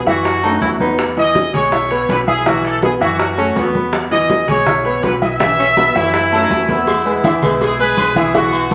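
Salsa at 163 BPM in E major, sunny and joyful, with a bright, punchy trumpet section carrying the melody over a clear grand piano accompaniment and a round, dark fingered electric bass, while a smooth-topped baritone saxophone adds a second line at 0.4 and again from 3.4 seconds. Congas, tight high-tuned bongos and cowbell, ringing metal-shelled timbales with agogo bells, and grainy maracas sit in the background, with drum fills near the start and from 5.4 seconds. A roomy horn section takes over the melody at 6.3 seconds as the harmony resolves from B7sus4 and Emaj7 to E, all set in a large studio reverb with vinyl crackle in this fragment of a longer piece.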